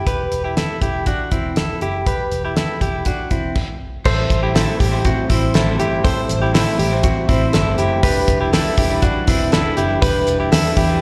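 Jangly indie pop in E minor at 121 BPM, restless and wistful, cut from a longer piece and heard as a live gig through the venue's PA with recital hall reverb: a clean, compressed, direct-recorded electric guitar picks up-front arpeggios with harmonic tremolo and slapback echo over a round, punchy, foam-muted fingered bass and a cloth-damped, thuddy drum kit with a fat snare, tight kick and dark cymbals, while a bright, twangy, slightly broken-up guitar through a small old amp joins at 4.0 seconds as the chords move from Em to Am7 and then Em7.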